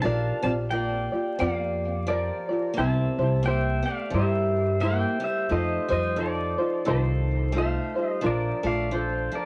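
Swung eighths in 4/4 carry this sunny, relaxed Hawaiian excerpt, where an up-front, clean, warm electric pedal steel guitar plays the melody with fingerpicks, slide and volume swells, bathed in plate reverb and tape echo, while a picked acoustic archtop guitar adds a second line with audible finger squeak, a light fingerpicked tenor ukulele supplies accompaniment, and a woody, dark pizzicato upright bass with tube saturation sits up front under a Bb6, C7, F7 and Bbmaj7 progression, all set in a small room and heard through worn, warbling cassette tape with vinyl crackle, pitch drift and a dulled top end.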